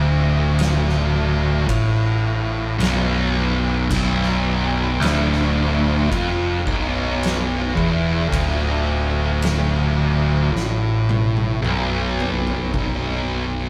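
Stoner and doom metal with a heavy, brooding mood, cut from a longer piece, where a thick, double-tracked fuzz guitar sits up front grinding out a low riff over a B minor chord while a growly, punchy overdriven bass plays beneath it. An oversized, low-tuned acoustic drum kit enters at 0.6 seconds, set in the background with a fat snare, boomy kick, gritty saturation and pumping room sound, and rolls through a fill from 10.5 to 12.7 seconds before the harmony drops away. The band plays live together in one room with moderate studio reverb.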